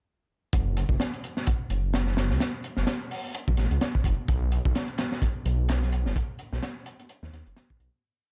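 Energetic and gritty, this short breakbeat piece drops in at 0.5 seconds and runs as one continuous drop, swung on the sixteenths. A crunchy acoustic kit plays a looped break with edits: a tight kick, a high-tuned snare and hi-hat, with a gritty, dark tone and a rolled-off top that keeps it smooth rather than harsh. Alongside it, a detuned sawtooth bass, layered in unison with a sine, plays a skipping, syncopated line in a low register. The bass is deep and rumbling, with a beating quality from the detuning, a fast attack into sustained notes and a saturated edge. Both parts sit up front in a dry mix, with the drums carrying the feel of a studio room, and the piece fades out from 5.5 seconds until it ends at 8.0 seconds.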